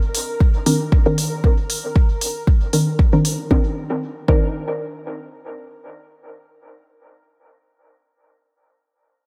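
Muted, detuned sawtooth chord stabs on a Cm9 carry this cavernous, hazy dub techno fragment at 116 BPM, their chorus, phaser, sidechain pumping and dub echo running until 8.4 seconds, while smooth layered hi-hats and a bright, bubbling, resonant stepped-filter texture in the background drop away around 3.5 seconds and a deep, up-front electronic kick follows at 4.4 seconds, leaving the stabs to drift on in light reverb.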